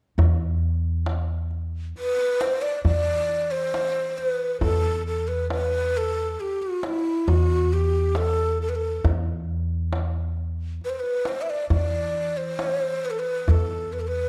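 A dark, warm production sets this short cut from a longer piece inside a moderate recital hall reverb, giving the Arabic maqam ensemble a longing, hypnotic air. Upright bass and darbuka begin together at 0.2 seconds in a straight 10/8, both placed up front. The bass is acoustic and pizzicato on gut strings, woody and thumpy in the low register. The darbuka, with its clay shell and natural skin, sounds large and deep, struck with hard hands in a live room. At 2.0 seconds a breathy, mellow ney enters on the melody, its end-blown reed cane giving a hollow, soft-attacked straight tone with lifted highs that sits close to the listener.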